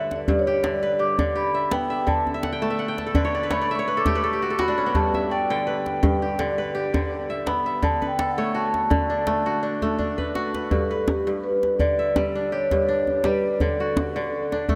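A lightly swung 83 BPM groove in 4/4 carries this joyful, flowing West African string and xylophone piece in G lydian, where a mellow, vintage-toned vibraphone played with soft mallets and a slow motor vibrato carries the melody over bright, crisp fingerpicked kora arpeggios that ring up front and add a fill at 2.3 seconds, both trailed by a diffuse ambient delay, while a close, dry djembe played with soft hands adds a drum fill at 9.8 seconds as the chords move between G and D, the dreamy mix soaked in huge reverb.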